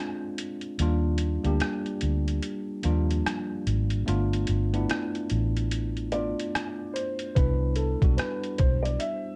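Mellow and dreamy, this lo-fi hip hop excerpt drifts at 73 BPM in G major with a swung 16th-note feel, as a worn, slightly out-of-tune tine electric piano, softened by cassette tape and a low-pass filter, carries chords from Bb7 through Ebmaj7 and G7 to Cmaj7. A gritty, pitched-down, sampler-style trip hop kit with a thumpy kick, hi-hat and rim click comes in at 0.4 seconds, followed by a round, foam-muted fingered electric bass at 0.8 seconds, both sitting up front. A boxy, woody upright piano, filtered and slightly detuned, touches a brief melody at the start and returns at 6.1 seconds, all under light reverb and a cassette tape haze.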